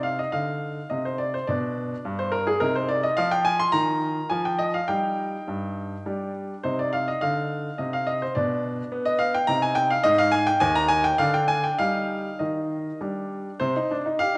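This classical-period piano sonatina fragment, cut from a longer piece, has a restless, dramatic mood in a three-beat metre, its pulse shaped by a flexible rubato. A single baby grand piano plays solo throughout the recording's 14.4 seconds, reaching from Eb2 up to C6. Its tone is clear and natural, with long sustain and an up-front presence, set in a wet recital hall reverb that lets each chord ring out into the space. The harmony moves from Cm through G/B, Ebadd9, Bdim and bare fifths on Ab and G, with a brief break in the chord progression at 11.2 seconds. Ebadd9 and G5 then lead the phrase back home to Cm at 13.6 seconds.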